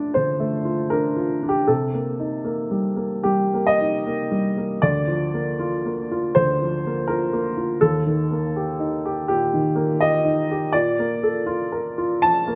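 Neoclassical minimalist piano in Bb major, tender and peaceful, moving in 4/4 with a rubato feel somewhere between 70 and 84 BPM. A single upright piano plays alone for the full 12.6 seconds, ranging from D2 up to A5. Its tone is woody and natural, sitting up front in the mix with a gentle warmth. The harmony drifts from Bbmaj7 through Cm7, Bb/D and Eb before settling back on Bbmaj7 at 10.7 seconds. A moderate scoring-stage reverb gives the instrument a soft halo of space, and the piano is tuned slightly below standard pitch, at A4 = 439 Hz. This short cut comes from a longer piece.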